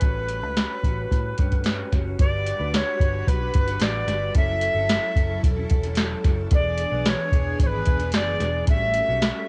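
Dreamy and nostalgic, this short excerpt of indie bedroom pop moves at 111 BPM in a straight 4/4, in G lydian, framed as a home cassette recording with light reverb around it. Up front, a soft vintage rhythm box sets the pulse with a deep kick, crisp snare and metallic hats, its tape-warm sound re-recorded in a small room. Beneath it, a muted picked electric bass sits dark, round and punchy, while an electric guitar through a small old amp adds slightly broken-up, compressed, lo-fi accompaniment, its pitch drifting in a warbly way under subtle chorus and plate reverb. The melody belongs to a bright alto recorder, airy and woody with vibrato and a soft attack, carried up front on lush chorus and tape echo. At 2.2 seconds a string machine voicing violins enters in the background with shimmering, full-bodied sawtooth chords under ensemble chorus, as the harmony moves from A13 through Gmaj7, F#m7 and E7 before returning to A13.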